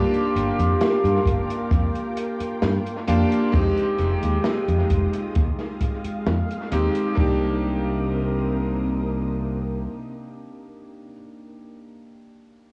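Nostalgic and melancholic, this slow 66 BPM vaporwave fragment in C minor pairs a clangy, cutting electric grand piano, lushly chorused and echoed by analog delay, with silky, warbling string-machine chords, a punchy, tube-saturated fingered electric bass, a boomy kick and a dark, smooth jazz kit of hi-hat and delayed snare, all bathed in spring reverb and cassette-tape haze as Gm7 gives way to Fm9 and then Cm7 at 7.2 seconds, just as the drums fall away.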